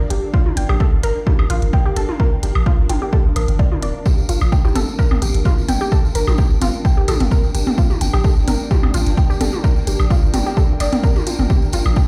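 A swung 16th-note groove drives this hypnotic, quirky minimal techno excerpt, where an up-front analog kick with a punchy thump and a deep sine sub bass with a pitch-drop attack and sidechain pumping anchor crisp, layered, tape-warm hi-hats and small-room electronic toms and woodblock trailing dub echo, while a squelchy, resonant blip pluck riff with filter sweep, chorus and dub echo plays over a blurred granular cloud pad fading in from the start and a mellow, detuned pulsing gated texture, both pumping in the background, with a bright, jingly, distant tambourine joining at 4.1 seconds and the mix ringing in a stone room's reverb.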